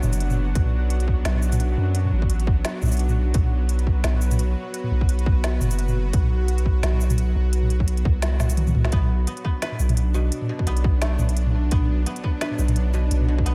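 A detuned, sawtooth-edged drone opens this tense, spacious half-time drum and bass excerpt, its bright string-like chords sustained with vibrato, bathed in built-in reverb and pumping against the sidechain. Beneath it sits a deep, mellow 808-style sine bass, placed up front, while a pulsing gated texture with chorus hovers in the background and an overdriven, organic electronic kit adds a woody snare, crisp hats, shaker and toms from a large room. A hard-clipped electronic kick joins at 0.6 s, close and up front as if re-recorded in a small room. After a drum fill, the gated texture drops away at 8.9 s and a dry, fingerpicked koto enters with arpeggios, its diffuse ambient delay spreading the notes into the space. The swung sixteenths and the B minor chord held throughout keep the mood suspended and uneasy.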